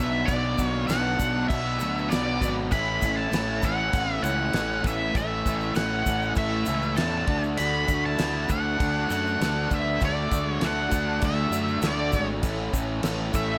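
An up-front, dark octave-fuzz lead guitar carries the melody through wah, distortion and slapback echo, joined by a second fuzzed guitar line tucked behind it, in this brooding, swaggering classic rock excerpt at 99 BPM in a straight 4/4. Two crunchy overdriven guitars pick riffs in the background over a round, fuzzy fingered electric bass, while a very quiet, mellow tonewheel organ holds chords through chorus vibrato and a rotary speaker, moving from Bm to A, D and back to A. From 0.3 s a dry, damped 70s drum kit with a fat snare, tight kick and dark crash cymbals drives the groove alongside a grainy egg shaker, all set in a light reverb.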